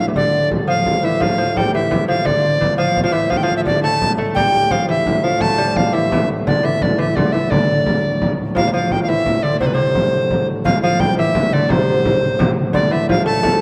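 Medieval dance in D minor at 114 dotted-quarter beats per minute in 6/8, a driving, ancient-sounding fragment cut from a longer piece, with a new section arriving at 8.6 s. Up front, a bright, reedy tenor recorder carries the melody with airy chiff, soft attacks and vibrato, while a delicate fingerpicked lute with doubled gut strings plays a second line beneath it. A very quiet pedal harmonium holds a breathing drone, and a deep frame drum played with hard hands joins at 0.2 s from a distance, all set in a dark production with a wet concert-hall reverb.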